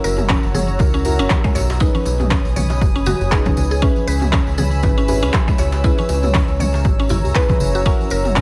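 Warm and driving, this afro house excerpt rides a swung 4/4 groove over a chord movement from F#7 to B69 and back. A round, deep analog bass sits prominently beneath a dark, moody analog pad whose slow-attack chords evolve with detuned, full-bodied depth, both breathing with sidechain pumping. Woody, mallet-like synth plucks spin arpeggios with a bright FM edge and analog delay, while soft, decaying chord stabs add mellow weight through chorus and a filter sweep. A layered deep house kit of handclaps, rim clicks and toms enters at 0.2 seconds in a small room, and the punchy, overdriven electronic kick follows at 0.3 seconds. Low-tuned ringing congas and a tight, cracking djembe sit in the background, with a jingly tambourine shimmering close, all wrapped in light digital reverb.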